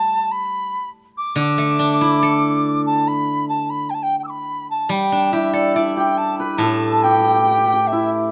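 Chinese traditional chamber music, festive and pastoral, moves at a rubato 71 BPM in 2/4 in the G gong mode, and this is an excerpt cut from a longer piece. A reedy large dizi carries the melody from D5 to E6 with a buzzing membrane, soft attack and vibrato, over a bright, silvery steel-string zither played with fingerpicks that accompanies throughout. At 5.3 seconds a shimmering hammered dulcimer enters with a second line, all heard through close, detailed microphones in a moderate recital hall reverb.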